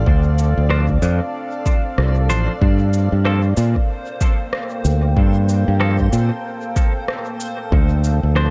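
This hazy, spacious ambient dub excerpt opens on a deep, moody pad sustaining chords with chorus and reverb, a growly fingered electric bass up front, and a reversed, granular swelling texture glimmering in the background, moving from Dm7 to Gm9 and back at 94 BPM with a swung 16th feel. An overdriven, layered electronic kick enters at 0.1 seconds, followed by an electronic cabasa and rim click carrying dub echo. At 0.7 seconds a clean, twangy electric guitar adds picked stabs, also trailed by dub echo, all set in a dark, warm production.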